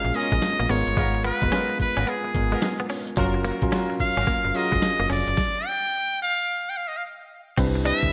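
Confident and slick, this short cut from a longer new jack swing R&B piece moves at 109 BPM in 4/4 with a 64% sixteenth-note swing. A buzzy, metal-muted trumpet carries the melody up front, with light vibrato and scooped notes, over a worn, slightly out-of-tune tine electric piano moving from A#m7 through G#m69 to F#maj7. A snappy, metallic slap-like FM bass and a gritty, pitched-down sampler-style drum kit with a thumpy kick, medium-tuned snare, hi-hat, crash and tambourine drive the groove. In the background, a twangy, direct-recorded clean guitar riff shimmers through analog chorus, while a distant, roomy horn section adds tight, soft-attack stabs. The band drops into a stop at 5.4 seconds and lands on a Cmaj9 at 7.6 seconds, with the bright 1980s-style digital production bathed in a moderate plate reverb.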